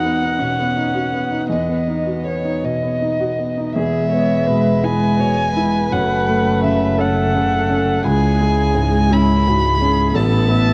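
This neoclassical piece for piano and strings unfolds in a rubato 6/8, intimate and tender, heard as a short fragment of a longer work. A dark, bowed violin carries the melody up front, played sul tasto with light vibrato, a soft attack and a tape echo, while a rich cello sings a second line from a distance in the background, pure and floating. A clear grand piano accompanies close at hand, its natural tone carrying short sustain and audible action noise. At 3.8 seconds the texture deepens as a warm viola with an airy bow joins the accompaniment, a reedy, breathing pedal harmonium holds very quiet, dry chords, and a woody bowed double bass settles underneath. The harmony moves from a B over E opening through E, F#m and C#m before resting on Asus2, all wrapped in light reverb and the worn, warbling pitch drift of old cassette tape.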